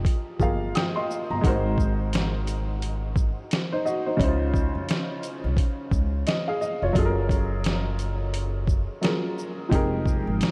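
A clear, slightly detuned upright piano with cassette-tape coloring opens this reflective, melancholic lo-fi hip hop fragment over woody pizzicato upright bass and a muffled, pitched-down sampler drum kit with a thumpy kick, swung sixteenths and chords moving from Fm11 through Ab7, Dbmaj7 and Gbmaj9, before a mellow, full-bodied string machine of cellos with ensemble chorus slips in at 9.7 s beneath a dreamy mix soaked in huge ambient reverb.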